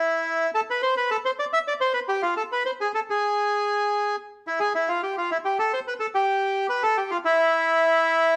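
Rubato phrasing over a loose four-beat pulse shapes this sultry, tense tango fragment, cut from a longer piece, in which a lone bandoneon, reedy, bright and up front, plays solo between E4 and E5 for 8.4 seconds, captured live in one room with a moderate studio reverb around it.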